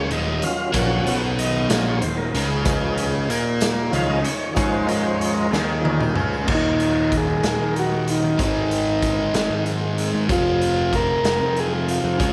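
Mysterious and trippy, this psychedelic rock fragment in 6/8 pairs a bright, double-tracked fuzz guitar riff up front with a round, punchy overdriven bass, gritty garage drums in a pumping stone room, a shimmering tanpura drone and a faint jingly tambourine, while a tonewheel organ with key click and slow rotary speaker takes a solo until a drum fill at 5.5 seconds ushers in a reedy, vintage combo organ melody with slapback echo at 6.5 seconds, the mix set in a moderate echo-chamber reverb.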